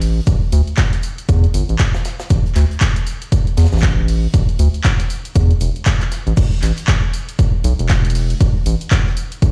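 A dry mix heard as if played on a big sound system in a bare room, with stone room reverb and a layer of vinyl crackle, opens this smooth, deep house excerpt cut from a longer piece, moving at 118 BPM in 4/4 with a 59% swing on the 16ths. A round analog bass sits up front from the start, a mellow blend of square wave and sine with a filter pluck, fast attack and sustained notes between E1 and E2, pumping under sidechain. A punchy, tape-warm analog drum machine supplies crash cymbal, handclaps and hi-hat, re-recorded in a small room, while an airy, polished acoustic studio kit stays in the background with hi-hat, shaker and a medium-tuned snare, its hats, snare, percussion and room all high-pass filtered. An electronic kick drum, analog and punchy and likewise re-recorded in a small room, enters up front at 0.3 seconds. The drop arrives at 6.4 seconds and carries the groove to the end at 9.5 seconds.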